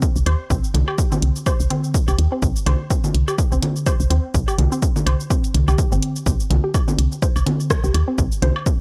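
A punchy, up-front electronic kick drives a 125 BPM 4/4 groove with a 56% swing on the 16ths, joined by an analog drum machine whose cabasa, hi-hat and rim click carry a tape-warm sheen. This is a short cut from a longer minimal techno piece in C minor, tuned to A4 = 438 Hz, and its mood is cool and clinical, resting on a single C5 chord. Up front, a woody FM bass with a round, dark, fast-attack tone moves between G1 and Eb2 and pumps under sidechain compression. From 0.3 s, a resonant, squelchy blip pluck mixes square, sawtooth and triangle waves with detuning, chorus, tape echo and sidechain pumping, and plays a riff between C4 and C5. Layered woodblock and congas, re-recorded in a small room and fed through tape echo, fill out the percussion, while digital ambience frames a dry, gritty hardware sound.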